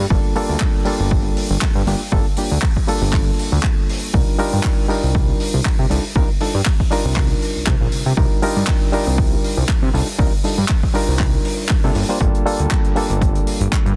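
Sleek and sensual, this nu-disco excerpt grooves at 119 BPM in 4/4 with a lightly swung sixteenth feel, moving from Gm7 to Cm11 and back to Gm7 at 12.0 seconds. A fat, thick analog bass with a detuned sawtooth edge and filter sweep pumps against a punchy, overdriven electronic kick. A bright, barky reed electric piano with dub echo also pumps, while a tight, natural funk kit adds handclaps, hi-hat and a softly clipped snare. Light reverb and a dense, heavily limited modern master glue the parts together.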